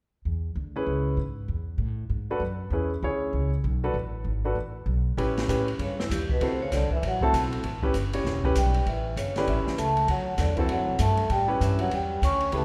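Small-group swing and bop jazz at 196 BPM in 4/4, with a swung eighth-note feel and a playful, sophisticated mood, cut from a longer piece. A woody, growly upright bass opens at 0.3 seconds, and a clear, intimate grand piano, its action noise audible, joins at 0.8 seconds over changes moving through C#m7, Esus4, a rootless Amaj7 and G#m. At 5.2 seconds the music settles into A mixolydian, alternating A7 and D7, as an open jazz drum kit enters with dark cymbals, a medium-tuned snare and a boomy kick. At 5.8 seconds a metallic, ringing vibraphone played with medium mallets takes the melody, its slow motor vibrato giving a vintage, band-limited tone, while a warm trombone with light vibrato carries a punchy, forceful second line that sits distant and roomy in the mix. The bass and piano stay up front in a moderate scoring-stage reverb, recorded in a church or concert hall.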